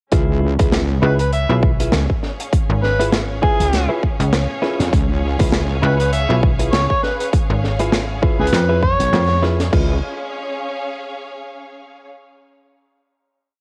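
Gritty and swaggering, this complete glitch hop piece struts at 100 BPM with a swung 4/4 feel, opening straight into a drop on a C#7#9 chord where an up-front overdriven electronic kick with broken patterns and an acoustic studio kit of snare, closed hat and bright crash drive beneath a heavy, detuned wobble bass with chorus, while clean electric guitar stabs carry sampler grit, sidechain pumping and analog delay, and a lush bowed string section pumps softly in the background. At 1.0 seconds a snappy, metallic FM bass enters with chopped phrases that answer the wobble bass, joined by an amplified, overdriven harmonica playing short answering phrases with tongue slaps, all colored by cassette tape and light reverb before a band accent at 9.1 seconds leads to strings sustaining a final C# chord until 12.1 seconds.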